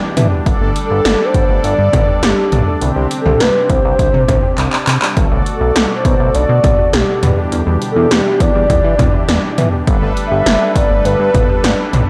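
Cool and melancholic, this synth-pop passage sets a hollow, woody clarinet-like synth lead carrying the melody with chorus and tape echo over a brassy analog pad, a warbly, lo-fi pluck playing arpeggios in the background, a glossy, nasal chorused synth bass and up-front 80s electronic pad drums whose gated snare and toms punch through in a drum fill at 4.6 seconds, all caught in a dry, gritty cassette-tape recording.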